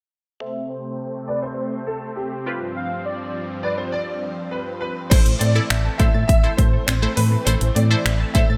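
Dance-pop with a confident, bittersweet mood and a bright 1980s-style digital sheen, opening with a lush detuned pluck under a filter sweep and a sustained supersaw pad, a brief airy, dreamy lead, and a warm, vintage grand piano melody entering at 1.3 s, before a punchy, round FM bass, a driving background arpeggio synth and a punchy electronic pop kit with gated-reverb crash, snaps and bright hats all arrive at 5.1 s.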